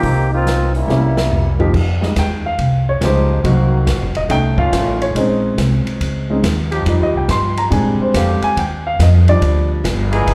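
Heard as a live gig through the venue's PA with a touch of club reverb, this swinging, dramatic big band jazz cut moves at 141 BPM in F minor with a 66% swing feel. A bright, up-front trombone section with light vibrato and slapback echo opens with a short solo over a drum fill, then the grand piano takes a solo from 1.7 seconds, and the section returns at 3.0 seconds with loose sustained chords. Woody, thumpy pizzicato upright bass and an airy kit with dark cymbals and a punchy kick support the present, polished piano, whose slapback echo colors chords that move from Fm9 toward Ebmaj9.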